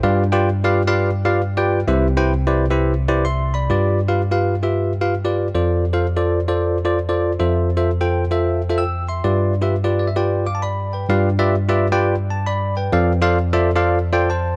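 A bell-like, bright tine electric piano plays alone and up front in this hopeful, soulful gospel excerpt, swinging in 4/4 over chords such as G7, Cmaj7, Dm7/F and Fmaj7, adding a fill at 9.7 seconds before the opening section returns at 11.1 seconds, all captured in a dry, close 1970s-style studio sound with light reverb.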